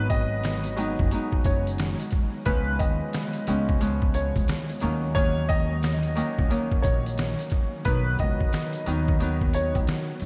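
A swung, sampler-style drum kit sits up front with a thumpy kick, medium-tuned snare and hi-hat, pitched down and compressed for a gritty, tape-warm feel, while a very quiet, band-limited tube shaker, woodblock and group handclap add vintage texture in this reflective boom-bap hip-hop piece. A woody pizzicato upright bass on steel strings anchors the chords, and a fingerpicked Celtic harp rings through a filtered cassette-tape sheen. A worn, slightly detuned upright piano carries the melody with long sustain and tape echo until 9.7 seconds, all in a dreamy mix soaked in huge ambient reverb and vinyl crackle.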